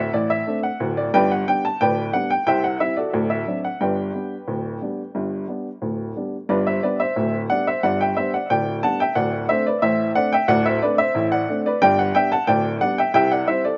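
This is a playful, jaunty ragtime piano piece at 90 BPM in 2/4 with a straight feel, in G major, cut from a longer performance. A solo upright piano carries the whole 13.8 seconds, ranging from D1 up to A5, and its woody, slightly detuned, vintage tone sits up front in the mix with a smooth, warm character. A slapback echo trails the piano, and a light reverb adds a touch of space to a recording made outdoors, with the top end rolled off above 7.5 kHz. The music opens on D5 and moves through G, C and D7 before returning to G, and the same section plays twice, the second pass starting at 6.5 seconds. A final turn to C arrives at 13.1 seconds, just before the cut.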